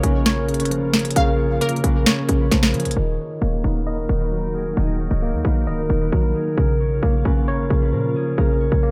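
Melancholic, hard-hitting half-time trap hip hop, cut from a longer piece, in which a ringing, fingerpicked concert harp carries the melody through dub echo over a worn, slightly out-of-tune tine electric piano, a punchy, tight short 808-style bass and an ethereal, warbling glassy FM pad in the background, while a crystalline, nasal glassy wavetable pluck adds a second line until 2.0 seconds and a crisp, sharp trap drum kit of hi-hat and snare hits up front until 3.0 seconds, when a filter sweep begins across the dry, echo-heavy mix.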